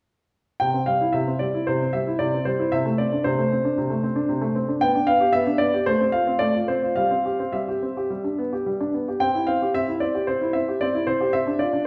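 A smooth, vintage-toned grand piano opens at 0.6 s and plays alone through to 11.9 s, a cheerful and graceful classical-period sonatina passage in 4/4 with a gently rubato feel, spanning C3 to G5. The harmony moves from C through D5/C, G/B, F/A and C/G to G and back to C, ending on Dm7/C as this fragment of a longer piece breaks off. A lush recital hall reverb, heard from further back in the room, surrounds the warm instrument.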